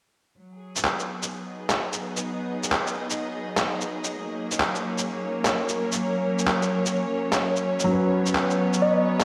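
Future garage excerpt with a nocturnal, wistful air, where a bright, biting symphonic string section fades in on sustained chords from 0.4 seconds, sampler-style shaker and handclaps sit pitched down and muffled up front, a felt-muted upright piano with delay enters at 7.8 seconds, and a round, gently decaying FM synth lead with chorus touches a single note at 8.8 seconds, all bathed in a dreamy hall reverb.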